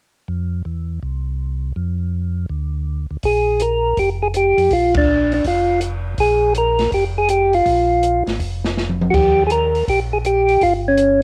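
A soulful, swinging soul jazz organ trio excerpt at 163 BPM opens with a mellow tonewheel organ playing the bass line alone from 0.3 s, its round, clean tone carrying vibrato, audible key click and the slow churn of a rotary speaker over F5 and Dm chords. At 3.2 s the music settles into Bb mixolydian over a Bb7(no3) chord as an acoustic jazz kit enters, sounding dark and smooth in a small room, with dusky cymbals, a medium-tuned snare, a boomy kick and a rolled-off top softened by cassette tape. Just after, the melody organ comes in up front, a percussive tonewheel voice with third harmonic percussion, slow rotary speaker, plate reverb and cassette tape coloring its lines between Db4 and Bb4. The band hits an accent at 4.9 s, and a short drum fill from 8.8 to 9.1 s leads into an Eb7 chord. The swung eighth notes and moderate studio reverb give the home cassette recording a soulful, swinging feel before the cut.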